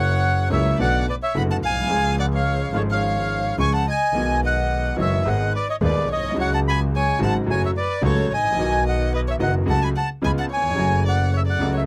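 Passionate and dramatic, this short tango fragment unfolds with a rubato feel in four, all four players sounding together from the opening to about 11.9 seconds. The bandoneon carries the melody high and up front, its tone reedy, full and dry in a close-miked sound. A single bowed violin plays a second line beneath it, warm with vibrato, soft attacks and expressive portamento. The concert grand piano supplies clear accompaniment with deep bass and a smooth, vintage character, while a lone bowed double bass sits forward, even and boxy with its own vibrato. The harmony travels from F#7 through Bm7, G#m and C#sus4 before closing on a C#7 to F#m cadence, all captured with detailed microphones and little reverb.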